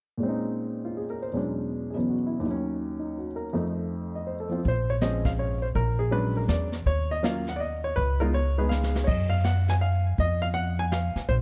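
A swinging lilt in three carries this late-night, smoky jazz piano trio, cut from a longer piece. A baby grand piano opens alone with the melody, its tone intimate and natural, with short sustain and audible action noise, placed up front. The upright bass enters at 4.6 s, plucked and woody on steel strings and also up front, and a brush kit follows at 4.7 s, bringing a smooth, dark sound from a medium-tuned snare, boomy kick, hi-hat and dark crash cymbals. The drums play a brief fill at 8.7 s. The harmony moves through lush minor ninth and eleventh chords and altered dominants, all set in a dark, warm production with light reverb.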